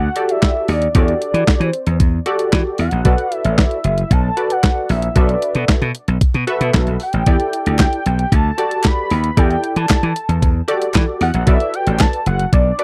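A straight 4/4 groove at 114 BPM drives this slick, late-night early-eighties boogie funk cut in E minor, built on a crisp, thumpy 8-bit drum machine with handclaps, hi-hat and a medium-tuned snare sitting up front beside a bright, punchy slap bass. A funky polysynth comp with a detuned sawtooth pluck and chorus moves through Em11 and Bm7, while a fat, dark analog lead with a sub octave, vibrato and chorus carries the melody high above. A human group handclap joins in the background from 7.8 to 12.1 seconds, and the whole dry, close studio sound feels like a section lifted from a longer piece.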